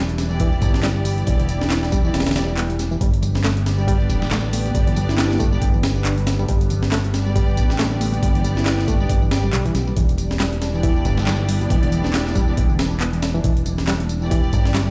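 Energetic and raw, this 138 BPM swung breakbeat excerpt in E minor pentatonic moves from Em7 to G and back. It is driven by a gritty, compressed sampler-style drum kit with a thumpy kick and high-tuned snare, a dark, punchy fingered electric bass up front, overdriven layered electronic tambourine and handclaps, and lush bowed string stabs with vibrato and dub echo. A reedy, tube-saturated electric piano riff and a thick, detuned sawtooth pad with chorus, phaser, vintage 12-bit sampler character and sidechain pumping sit in the background, a faint electronic swell appears at 2.5 seconds, and very quiet bright congas join at 3.2 seconds, all within a big bare-room studio reverb.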